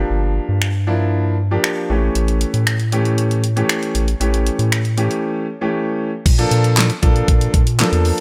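A grand piano and a round analog bass open this short dance-pop excerpt together, both pumping under sidechain compression as a Gm7 chord gives way to A7 at 1.9 seconds. The piano has deep bass and a long, open sustain in the middle register, while the bass sits dark and nasal beneath it with a fast attack and held notes. At 0.6 seconds a layered, electronic pop drum kit comes in up front, with a knocking kick, fat snare, hi-hat, handclaps, finger snaps and crash cymbal, all roughened by overdrive and the tight sound of a small room. The tempo is a straight 117 BPM in 4/4, and the mood feels bittersweet yet energetic. After a break at 5.2 seconds, the music moves to a new section on a Bbmaj7 chord at 6.3 seconds, with a digital ambience surrounding the mix.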